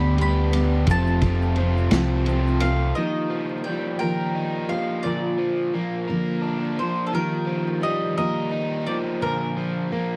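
Folk rock with a heartland rock lean, this hopeful excerpt moves at a slow 58 BPM in 6/8, with a double-strung mandolin carrying the melody over a woody, full-bodied jumbo acoustic guitar and an up-front, double-tracked overdriven electric guitar riff. A round, amped electric bass, a vintage kit with dark cymbals and a gritty, rolled-off sound sitting in the background, and a very quiet grainy shaker all drop out around 2.9 seconds, leaving the guitars and mandolin to carry the passage that begins at 3.0 seconds over chords moving from Ebadd9 to Bb. The sound is dry and close in a 1970s studio style, with vinyl crackle.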